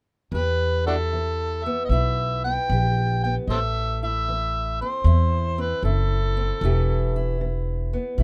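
Mournful and soulful, this short excerpt from a longer acoustic country blues piece moves at 76 BPM in 4/4 with a swung eighth-note feel, set in E minor and tuned slightly sharp to A4 = 444 Hz. An overdriven, amplified harmonica carries the melody up front from 0.3 to 7.4 seconds, its gritty tone shaped by light vibrato, soft attacks, scooped notes and tongue slaps in a jazz-inflected solo style. Beneath it, a fingerpicked steel-string parlour guitar supplies accompaniment with a dark, boxy character from old strings. A pizzicato upright bass sits prominently in the mix with a thumpy, woody sound, playing through to 8.2 seconds alongside the guitar. The harmony moves from Em to Am at 3.5 seconds and back to Em at 6.6 seconds, all framed by light reverb.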